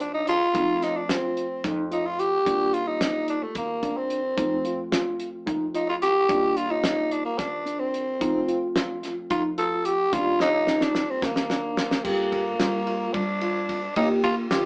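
Progressive instrumental band music in 7/8, driving and bright, cut from a longer piece and heard as a live band in one small room with a wet reverb and a small-speaker sound. A raspy, gritty tenor saxophone sits up front with a close-miked solo full of vibrato and scooped notes, while a mellow tine electric piano plays arpeggios, a dark, boxy grand piano accompanies in the background, and a woody pizzicato upright bass with gut strings thumps below. The cloth-damped drum kit, with its fat snare, tight kick and dark cymbals, plays a fill from 10.4 to 12.0 seconds, ending the saxophone solo as the music moves into a new section on a Gm7 chord.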